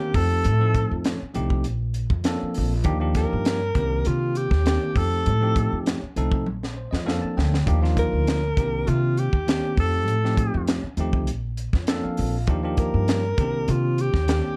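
A straight 4/4 groove at 100 BPM drives this slick, funky electric jazz fusion excerpt, where a crisp acoustic drum kit with a high-tuned snare, tight kick and pumping small-room sound and a woody, thumpy pizzicato upright bass on gut strings sit up front beneath a mellow, smooth-topped alto saxophone solo with vibrato and slapback echo, while a bell-like, clean tine electric piano plays through cycling F9, Bbmaj9, Ebmaj9 and Cm9 chords and adds fills at 6.5 and 11.6 seconds, the first alongside a drum fill, in a dark production with light reverb.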